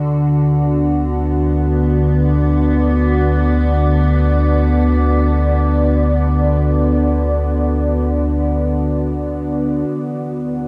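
Ambient music in free time, serene and weightless, heard as a short fragment of a longer piece. An evolving wavetable pad sits up front, its detuned unison of triangle and sine tones morphing as it holds sustained chords with a slow attack and long release, softened by chorus, built-in reverb and a shimmer reverb. Beneath it, a deep, round sine sub bass holds a low D with a fast attack, given tube saturation and placed up front alongside the pad. Further back, an analog drone of sawtooth and pulse waves with pulse-width modulation adds a resonant, warm glow, its chorused tone evolving as it sustains. The harmony rests on Bm/D and shifts to Dadd9 at 9.9 seconds, all of it bathed in a huge ambient reverb with a cassette tape character.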